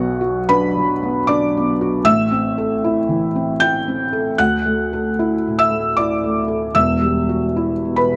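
Flowing in rubato 3/4 at 76 BPM, this brief, intimate and wistful neoclassical minimalist excerpt in A dorian features a solo felt-muted upright piano, soft, mellow and up front with audible action noise, spanning E1 to G6 over chords moving from Bm to Am, Dadd9 and Emadd9, captured with close, detailed microphones and light reverb.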